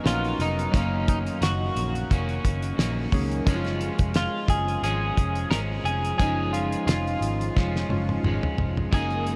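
Glossy, detuned retro synth keys and a slightly broken-up electric guitar with warbly pitch drift open this hazy, nostalgic bedroom-pop excerpt at 88 BPM with a gentle swing, joined almost at once by a twangy, compressed clean guitar melody through analog chorus and tape echo, a round, foam-muted picked bass, and a dry, thuddy cloth-damped drum kit with a fat snare that plays a fill from 7.6 seconds, before shimmering string-machine violins arrive at 8.9 seconds, all soaked in a huge, dreamy ambient reverb over Bmaj7, D#m7/F# and C# chords.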